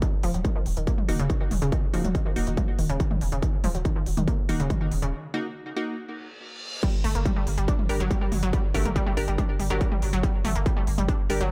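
Driving peak-time techno at 141 BPM in G harmonic minor, this industrial excerpt pairs a distorted, up-front electronic kick with a tape-warm kit of smooth hats, crash and toms, a thick saturated sub bass under a low-pass filter, a bright, detuned unison pluck riff colored by cassette tape and tape echo, and crisp digital wavetable chord stabs entering at 1.1 seconds. The kit, bass, pluck and stabs all pump to the sidechain in a dry, echo-heavy mix, as a break from 5.1 seconds brings a reverse cymbal that leads into the drop at 6.8 seconds, where the harmony moves from Ebm to Gm.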